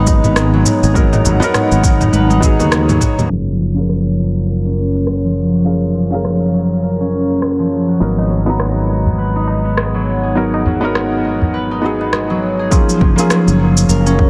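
A swung 16th-note groove drives this meditative, hypnotic organic downtempo excerpt, where a tape-tinged electronic kit's rim click, shaker and toms and a faint, ringing high-tuned tabla sit under a punchy layered kick that drops out between 3.1 and 12.7 seconds, while a filter sweep washes over the drums, the up-front fingerpicked concert harp arpeggios and the dark, warbling lo-fi pad; a growly fretless bass and a mellow felt-muted upright piano with audible action noise pump with the sidechain over the G#m7 and F#maj7 chords.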